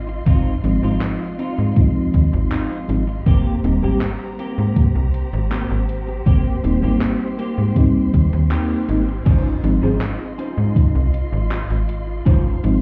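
An overdriven, thumpy electronic kick sits up front in this nostalgic, faded vaporwave fragment, alongside a gated 80s drum machine's crash, handclaps and hi-hat, a snappy slap-like FM bass, a twangy clean electric guitar riff with chorus and tape echo, a soft, round FM electric piano, and sustained chords from a bowed chamber string section with vibrato, all heard muffled as if through a wall of a reverberant club, with a brief band accent near 8.5 seconds before the harmony shifts at 9.3 seconds.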